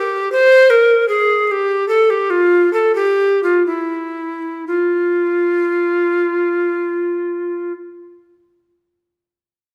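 Radiant and serene, this baroque-style classical fantasia for unaccompanied tenor recorder moves in a rubato 3/4 at roughly 58-80 BPM, slowing through its opening 4.7 seconds before a new section begins. The recorder plays alone from 0.0 to 7.7 s, sitting up front within a range of E4 to C5, with a woody, airy tone, vibrato, and a crisp, chiffy attack. A wet recital-hall reverb with a 1.4-second decay surrounds the instrument, and the passage is cut from a longer piece.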